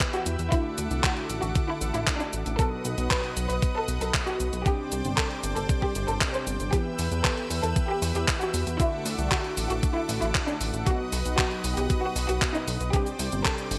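A lush, airy unison pad, a bowed violin section and dark, brassy synth stabs open together over a thumpy electronic kick and a sampler-style drum machine of cabasa, handclaps and hi-hat, setting a nostalgic, danceable italo disco groove at 116 BPM in E minor. A glossy, nasal synth bass joins at 0.3 seconds, its pulse-wave and sawtooth tone shaped by a filter pluck and tube saturation, sitting up front with the drums. The close, woody violin section carries the melody with vibrato and a touch of delay, while the detuned pad holds sustained chords with chorus and the round synth brass punches in with chorus, phaser and a cassette-tape grain. The drum machine's claps and hi-hat ring through gated reverb, and the changes cycle through Em, Dadd9, B and Csus2 twice across this short section of a longer piece. The whole mix has a bright 1980s-style digital sheen with a moderate plate reverb.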